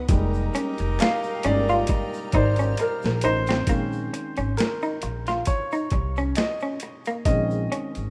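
R&B and neo-soul at a slow, sultry 67 BPM in Bb dorian, this late-night excerpt has a woody upright piano taking the solo up front over a growly pizzicato upright bass and a gritty, compressed boom-bap sampler-style kit with a thumpy kick. A slightly broken-up, lo-fi electric guitar with analog chorus adds a second line, while a lush, bowed string section sits bright in the background and a close-miked jazz-style saxophone section punches stabs until 3.2 seconds. A drum fill at 2.8 seconds leads into the shift from Fm11 to Bbm11 at 3.7 seconds, where the strings drop out, and a very quiet, distant tube shaker with finger snaps sits under the rough home-demo mix in its light small-room reverb.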